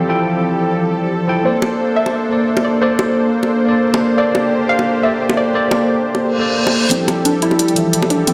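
A clean tine electric piano sits up front in this uplifting, lush liquid drum and bass passage, its chords softened by a low-pass filter and trailed by tape echo over Fmaj9 moving to Bbmaj9 at 1.5 seconds. Alongside it, a thick, nasal unison pad of detuned sawtooths holds sustained chords with a soft attack and long release, shimmering with chorus. A soft, round pluck carries the melody from 1.5 seconds, its dark, wave-folded tone ringing through chorus and digital delay, while tight, high-tuned bongos played with hard hands add close, dry percussion. An electronic reverse cymbal rises into a build-up at 6.9 seconds, where bright, overdriven electronic hi-hats arrive and the harmony returns to Fmaj9, with a deep, mellow 808-style bass barely audible near the close. The whole sits in a lush hall reverb and the stony resonance of a bare room heard through a big sound system, cut from a longer piece.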